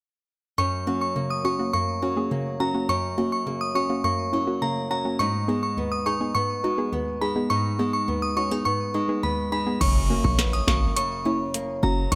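From 0.6 seconds, a crystalline FM synth bell carries the melody with chorus alongside a dark, wave-folded pluck pumping under sidechain and a fingerpicked acoustic flamenco guitar weaving arpeggios over F# and G#m chords in this bouncy, sultry dancehall excerpt at 104 BPM, until at 9.8 seconds a punchy, heavy 808-style bass, an up-front, tape-warm analog drum machine with a deep kick, tonal snare, metallic hats and crash, and a very quiet electronic impact arrive, all set in light digital ambience.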